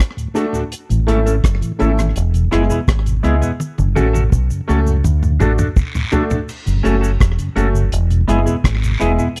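Roots reggae at 83 BPM in a straight 4/4, this uplifting, laid-back excerpt from a longer piece moves through D, A, E and F#m, with a deep, dry drum kit up front (tight kick, rim click, toms, hi-hat and crash) and a drum fill from 3.6 to 6.5 seconds. A round, dark dub fingered bass enters at 0.9 seconds and sits prominently, while a mellow, flute-like tonewheel organ with key click, slow rotary speaker and slapback echo stays in the background alongside intimate piano stabs with audible action noise and a clean, fingered electric guitar treated with phaser and tape echo. Quiet cabasa and guiro add small-room texture to a close, 1970s-style studio sound with little reverb.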